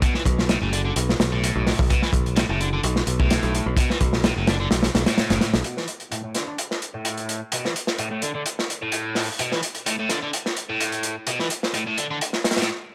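A lightly swung breakbeat groove drives this raw, energetic excerpt, its crunchy acoustic kit sounding gritty and saturated with a punchy kick and a dark, rolled-off top, while a biting, double-tracked overdriven guitar riff carries vintage 12-bit sampler grit, a low-pass filter and delay. A growly, bright picked electric bass sits up front from 0.3 seconds until 5.6 seconds, the kick briefly dropping out just before that point. From there the guitar riff runs through a filter sweep over the drums until the music breaks off at 12.7 seconds.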